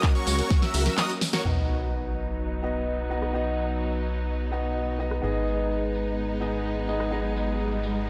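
This anthemic, euphoric festival progressive house excerpt in B major at 127 BPM opens on a drop where a punchy electronic kick, a house kit of snare, bright hats, handclaps, rim click and tambourine, a huge detuned supersaw riff and a bold unison lead arpeggio with lush chorus and tape echo ride over smooth, sidechain-pumping string chords; a fat analog bass joins at 0.3 seconds, and after a drum fill and break, the lead and supersaw give way at 1.4 seconds to an intimate concert grand piano with audible action noise, a background sub drop and riser, and a filter sweep on the strings as the harmony moves from B to G#m.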